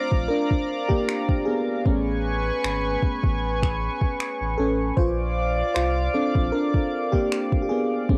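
Contemporary R&B at a relaxed 77 BPM in 4/4, with a light swing on the sixteenths, this short, smooth and tender fragment is cut from a longer piece. A mellow FM electric piano carries the lead from the first moment, its round, full-bodied tone softened by chorus and a faint noise layer as it moves through Bbmaj9, Amaj9 at 1.9 seconds, and back to Bbmaj9 at 5.0 seconds. Above it, a chorused pulse-width pad holds shimmering, retro chords with a slow attack and long release, pumping gently under sidechain. A saturated sub bass enters at 0.1 seconds with deep, thick sustained notes, alongside a soft electronic drum kit of finger snaps and kick drum. Everything sits up front in a dry, intimate home recording on cassette, with the tape coloring the piano, pad and drums.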